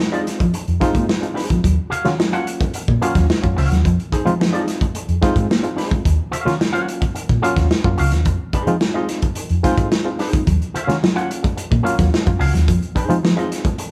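A crunchy breakbeat drum kit sits up front, its saturated, gritty sound with a punchy kick, a medium-tuned snare and hi-hat giving this hypnotic funk groove in Eb dorian its drive at 109 BPM in a straight 4/4. A barky, reedy electric piano plays stabs throughout, lightly overdriven with a fast tremolo, while a bright, twangy electric guitar through an envelope filter supplies picked accompaniment in a higher register. A dark, foam-muted fingered bass with a round, amped tone enters at 0.7 seconds and anchors the low end. In the background, a mellow, clean electric guitar plays a fingered riff that drops out at 6.0 seconds and returns at 10.5 seconds. The harmony moves back and forth between Fm7 and Ebm9, and the whole band sounds like it is playing live in one room with light reverb, in this section cut from a longer piece.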